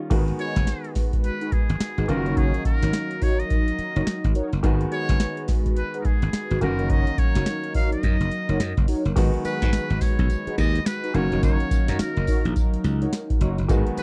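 New jack swing R&B with a bouncy, punchy feel, this 106 BPM groove in G# minor rides a swung sixteenth-note pulse, cut from a longer piece. A booming analog drum machine sits up front with a deep kick, crisp snare, metallic hats, crash cymbal and tambourine, carrying the ambience of a large room, while a glassy, growly slap bass punches alongside it. A bright concert grand piano with short sustain supplies accompaniment, mellow synth brass adds round, detuned chorused stabs, and a swirling phased analog pad enters at 0.8 seconds to hold sustained chords in the background. Over this, a trumpet with a metal mute carries the melody from 0.4 seconds, its buzzy, breathy, intimate tone touched by slapback echo in a jazz style. The harmony alternates between G#m7 and F#6, and a second section begins at 9.2 seconds, all captured in a dry, close 1970s-style studio sound.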